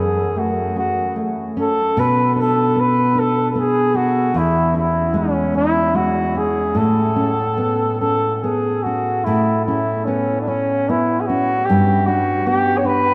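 A mellow flugelhorn and a thumb-plucked nylon-string guitar begin together in this wistful, nostalgic Celtic slow air in A major, moving freely in 6/8 at about 50 BPM in dotted quarters. The flugelhorn carries the melody in a classical style with light vibrato, sounding distant and roomy, while the warm classical guitar accompanies through F#m, Bm, E6 and Aadd9, reaching a G at 11.7 seconds. A vast cathedral reverb surrounds this short cut from a longer piece, whose opening section returns at 9.3 seconds.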